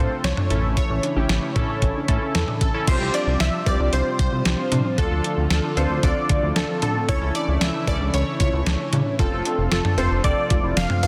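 A straight 4/4 beat drives this melancholic synth-pop excerpt, carried by a clean 12-bit drum machine that enters at 0.2 seconds with a thumpy kick, fat snare, hi-hat, toms, cowbell and crash cymbal, sampled with a small-room character and set up front. Beneath it, a glossy chorused synth bass blends pulse, sawtooth and sine tones into a retro, mellow low end with a quick plucked attack. The lead is a punchy, funky polysynth comp of detuned sawtooth and pulse waves, its filter sweeping and a notch moving through the tone, treated with chorus and tape echo. Round, airy analog keys warble with a noise layer and filter sweep as accompaniment, while a shimmering pulse-width pad holds sustained chords in the background and a nasal, lo-fi pluck traces arpeggios through chorus and tape echo. The chords move from F and A into Csus4, Dm and A/C# before returning to F, all within a dense, heavily limited modern mix touched by light reverb.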